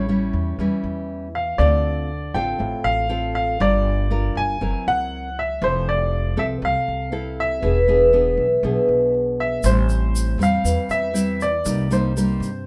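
Lightly reverberant and intimate, this wistful, smooth bossa nova fragment at 119 BPM in straight 4/4 sets a clear baby grand piano melody, its action noise audible, over fingerpicked classical nylon-string guitar and a woody pizzicato upright bass, all three up front, with a grainy, mellow tube shaker joining close at 9.6 s as the chords move from A7 through Dm7 and F#7#11 to Cm7.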